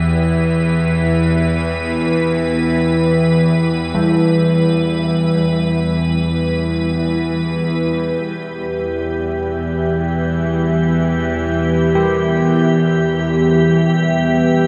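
A tense, string-like bowed drone sits up front, its detuned sawtooth tone carrying a bright edge, a breath of noise and a vibrato, colored by a phaser and sustained low in the register. This is a dark, cavernous ambient drone in E minor, moving in free time and resting on a single E minor chord throughout this excerpt cut from a longer piece. Higher up, a deep, moody ambient pad of sine and sawtooth layers with a sub octave slowly evolves under chorus and shimmer reverb, fading out across the first 7.7 seconds. Above, an icy glass pad adds an airy, crystalline shimmer in a narrow high band, also softened by chorus and shimmer reverb. From 3.9 seconds, carillon bells ring in the background with bronze, smooth arpeggios through tape echo, their tone marked by a minor-third overtone and a worn iron clapper. The whole piece is drenched in a huge, eight-second reverb tail, giving the production a dark, enveloping depth.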